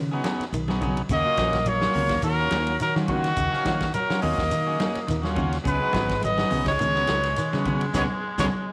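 Framed by a moderate plate reverb with a studio-room sound, this driving, funky afrobeat excerpt in Eb minor moves at 105 BPM with a lightly swung sixteenth feel, as an up-front trumpet with vibrato carries the melody from 1.1 seconds over a gritty tenor saxophone second line with scooped notes, a round fingered bass, very quiet twangy guitar arpeggios on the edge of break-up, clean picked guitar stabs, a buzzy combo organ, a vintage kit with punchy kick and rolled-off top, ringing hard-hand congas and a grainy shekere, before a forceful, raspy baritone saxophone with slapback echo joins at 7.4 seconds ahead of a band accent at 7.9 seconds.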